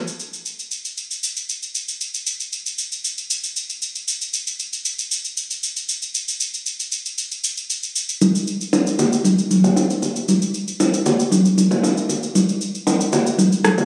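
A straight 4/4 groove at 116 BPM carries this soulful, late-night amapiano fragment, with a layered electronic shaker and rim click, re-recorded in a small room, sitting up front from 0.1 s before bright acoustic congas and bongos from a distant large room join at 8.2 s, all under light reverb and the digital ambience of a phone capture.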